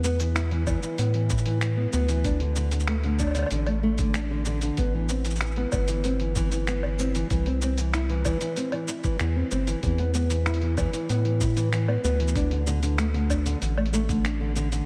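A thumb-plucked nylon-string guitar opens this delicate, intimate folktronica excerpt in E minor at 95 BPM, its small, up-front arpeggios carrying a tape echo, while a round, deep, slightly nasal analog bass and a muffled, pitched-down sampler kit of finger snaps, hi-hat, shaker and woodblock play alongside it. A compressed, thumpy electronic kick joins at 0.7 seconds as the harmony moves through E5, D5, Amadd9 and C before returning to E5 and D5. Light reverb gives the whole a close, hushed room.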